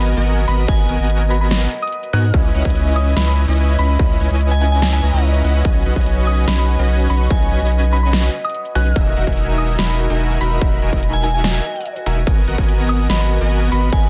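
Future bass at 145 BPM in a half-time 4/4 feel, this bittersweet, lush cut in G# minor is taken from a longer piece and tuned to A4 = 442 Hz. A soft, pure FM synth bell carries the melody high up, its gentle, warbling vintage tone shaded by chorus, phaser, 12-bit sampler grit and dub echo. Beneath it a bright acoustic concert harp rings out arpeggios in the background, also trailing dub echo, while a huge, airy supersaw riff of detuned unison sawtooths with a sub octave and noise layer sustains under heavy compression and vibrato. A thick, saturated sine sub bass sits up front, and from 0.7 s a distorted, layered electronic kick joins the dubstep kit's huge snare, metallic hats and ride, with the bell, harp, supersaw and sub bass all pumping against the sidechain. The chords move through G#m9, C#m9, B69 and Emaj9#11 before returning to G#m9, in a dry, dense, heavily limited modern master.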